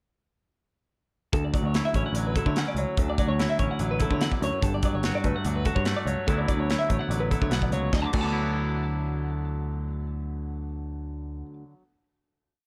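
A bright, compressed twelve-string electric guitar carries a high ostinato of arpeggios through digital delay and plate reverb, above a clean, up-front twangy electric guitar rolling fingerstyle arpeggios over Dmaj9, Gmaj7sus2 and D69 in D major. This wistful, intricate math rock and midwest emo piece moves at 145 BPM in 4/4. A punchy picked bass plays a syncopated riff, and an airy, polished drum kit with a punchy kick breaks the groove until 8.3 s, while the guitars hold a final chord from 7.9 s in a dark, lightly reverberant production.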